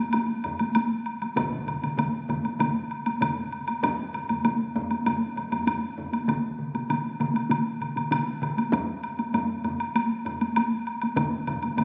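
Captured on a phone in the room, this compressed recording sits in a wet concert-hall reverb, with a club-like ambience on top. It is a powerful, ceremonial fragment of Japanese traditional taiko drumming in a straight 4/4 feel. A close, dry taiko ensemble struck with heavy sticks and an up-front, woody woodblock open together at 0.1 seconds, joined by a second heavy-stick ensemble in a small room. From 1.4 seconds a solo taiko player with hard sticks and a third, closely miked hard-stick ensemble add further layers.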